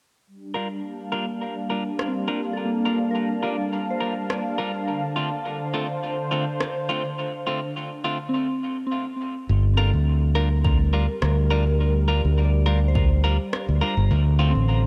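Ambient dub in G minor at 104 BPM with a light swing, deep and hazy, where a smooth, detuned sawtooth pad with chorus and tremolo holds Gm7 and Dm7 chords beneath clean, compressed electric guitar stabs sent through a low-pass filter and dub echo; a pure, warbling FM synth bell spins arpeggios through phaser and echo from 2.1 s alongside an overdriven electronic rim click; then at 9.5 s an up-front, tube-saturated fingered electric bass arrives, joined at 10.6 s by a deep, tape-warm electronic kick drum, the whole cut from a longer piece set in a lightly reverberant space.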